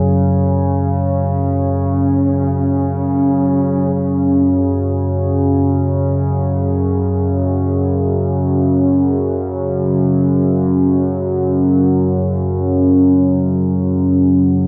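A nasal, evolving analog drone plays alone, its sawtooth and pulse-wave tones shaded by pulse-width modulation, chorus and a diffuse ambient delay, sustaining low between F#2 and C#3 with slow attacks and long releases inside a huge, wet reverb, shifting into a new section at 3.9 seconds in this ominous, vast ambient passage cut from a longer piece.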